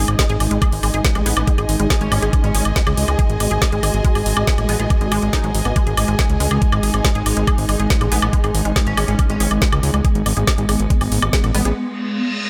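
A swarming, tense drone with built-in reverb opens this driving, intense psychedelic trance piece alongside a fat, detuned sawtooth bass up front and a bowed studio string section with vibrato, soon joined by a knocking electronic kick, a garage kit of woody snare, metallic hats and woodblock, and a punchy unison pluck riff with tape echo in the background, while an aggressive FM wobble bass with 12-bit sampler grit, chorus and digital delay appears from 1.3 to 4.8 seconds and again from 8.1 seconds, and sidechain pumping moves the drone, strings, pluck and wobble until a brief break at 11.8 seconds, where a reverse cymbal sounds up front.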